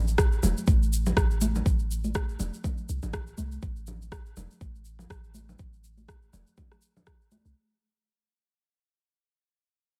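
Afro house at 122 BPM in A minor pentatonic, this short, spiritual cut from a longer piece rides a swung sixteenth-note groove, with a deep, boomy 808-style bass, sine-based with a noise layer and sidechain pumping, sitting up front from the start. A grainy, bright tube shaker enters at 0.1 seconds, a deep electronic kick and a produced rim click follow at 0.2 seconds, and high-tuned congas with a thick skin and soft hands arrive at 0.4 seconds, their vintage, band-limited tone adding an acoustic touch. The mix is dry, with little reverb, and the whole passage fades out across its 7.6 seconds.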